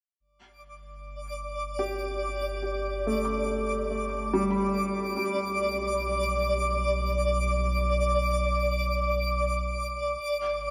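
A twinkling granular texture shimmers up front from 0.7 seconds, its sparkling, octave-up FM grains swelling in slowly, sustaining and trailing off through their own built-in reverb. This is a weightless ambient excerpt in G major, drifting at 72 BPM in 3/4 with a straight feel. Beneath it, a deep, round sine sub bass holds sustained low notes and gradually fades in across the passage. A soft, felt-muted upright piano plays intimate, mellow arpeggios between 1.8 and 5.4 seconds, thin and natural in tone and echoed by analog delay as it fades in. The harmony moves from G to B minor. A huge, wet reverb soaks the mix, lending the music a dreamy, suspended glow.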